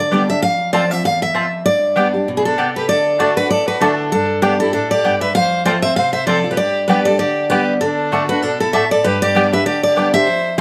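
The rhythm rolls along at a fast, swung clip in four, giving this joyful, virtuosic bluegrass excerpt an easy forward lilt. A picked steel-string acoustic guitar carries the melody up front, its tone bright and full-bodied, while a second picked guitar with fresh strings supplies accompaniment from the low bass register up into the midrange. A woody mandolin with its doubled strings adds bright stabs across a broad span, and a clear, earthy fiddle joins at 2.4 seconds with a second line, bowed by one player with light vibrato and set distant in the mix. The harmony circles through F, G and D chords, all within a single section cut from a longer piece. Moderate studio reverb gives the ensemble a natural sense of room.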